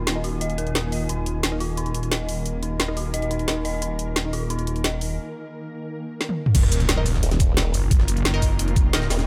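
A dark, aggressive slice of technical drum and bass at 176 BPM, cut from a longer piece, set in light digital ambience with a swarming, nasal drone and a blurred granular cloud pad, while an eerie, inharmonic FM bell arpeggiates and a thick, saturated detuned saw bass sits up front, all pumping under sidechain, as muted dub chord stabs through phaser and tape echo sit in the background. Overdriven drum and bass kit with a woody snare and bright hats drives the opening as a filter sweep moves across the drone, then a break and drum fill lead to the drop at 6.5 seconds. There, a knocking electronic kick, a gritty, pitched-up jungle-style kit and a very quiet impact hit together, joined moments later by a wobbling formant-sweep bass.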